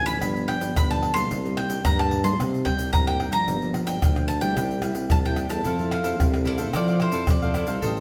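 An up-front bowl-back mandolin picks a bittersweet, lively samba-and-choro melody on double strings at 110 BPM. It is backed by a warm tuba bass with light vibrato, a full-bodied, fingerpicked classical nylon-string guitar with audible finger squeak set in the background, and close, dry egg shaker, pandeiro, tight surdo and tamborim, while a crisp, bright cavaquinho joins at 5.6 s as the chords move from G7 through Cm7, Gm7 and C7 to Fmaj7, the whole band playing live in one room with a wet stone reverb on this fragment cut from a longer piece.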